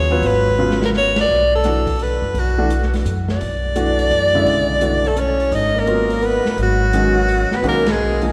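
A bright, vibrato-laden soprano saxophone carries the melody from the first instant over clear, intimate grand piano and woody pizzicato upright bass, with a dark, smooth jazz drum kit joining at 0.2 seconds, in this searching, hypnotic modal jazz cut from a longer piece at 170 BPM in a swung 3/4, moving from G#m7 to Bm7 and on to G#m9, marked by an early drum fill and band accents, with a subtoned tenor saxophone adding a second line from 5.1 seconds, all bathed in the long, wet reverb of a church.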